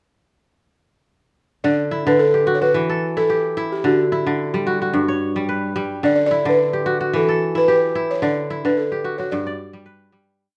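Warm and joyful, this short, complete West African piece for strings and xylophone moves at 110 BPM in 4/4 with a gentle swing on the sixteenths, set in D major. The kora, fingerpicked and sitting up front, spins a crisp, ringing interlocking ostinato of arpeggios that spans from G2 up to D5. Over it the balafon carries the melody, its woody, buzzing tone struck with soft rubber mallets as it states short, motif-based call phrases between F#4 and D5. The balafon keeps a dry, boxy small-room character, while the whole recording sits in a moderate recital-hall reverb. Both instruments enter together at 1.6 seconds and cycle through a simple D, Em, D, G progression twice. A fade-out begins at 8.2 seconds and carries the piece to its close.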